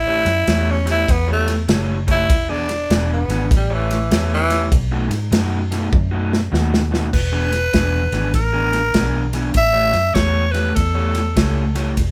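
A raspy, growling tenor saxophone leads this soulful, laid-back electric blues shuffle, playing up front with a gritty jazz edge and taking a solo from the opening moment until 7.1 seconds. Beneath it, a vintage, foam-muted fingered electric bass gives a dark, round, amped low end. A raw garage guitar plays a picked riff through overdrive, its tone warm and slightly further back in the blend. A natural country drum kit sits up front with a small-room acoustic sound: dark cymbals, a medium-tuned snare, a tight kick and toms, with a drum fill from 5.9 seconds that leads into the next section at 7.1 seconds. At 99 BPM with a swung 4/4 feel, the band sounds as though it is playing live together in one room under light reverb, moving through A7, E7 and B7 changes in this cut from a longer piece.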